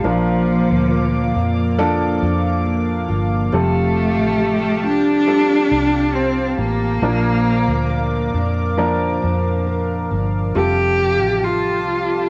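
A slow, straight 4/4 pulse at 69 BPM carries this heartfelt, hopeful pop passage, which is cut from a longer piece and runs the full 12.3 seconds with every part playing throughout. Up front, a single bowed cello sings the melody with a rich, smooth, even tone and vibrato, though it sits at a slight distance in the space. Beneath it, a warm, open baby grand piano supplies the accompaniment, while a shimmering, retro pulse-width pad with detuned sawtooth and square layers, a sub octave and chorus holds slow-attack chords above. A fingerpicked steel-string acoustic guitar with fresh strings and audible finger squeak adds arpeggios in the background through an analog delay, and a dark, round, punchy foam-muted electric bass anchors the low end as the harmony alternates between Bb and Fadd9. The cello, piano, pad and guitar carry a cassette tape colour, and the whole mix sits in a wet studio reverb with the homespun feel of a cassette home recording and a faint mains hum.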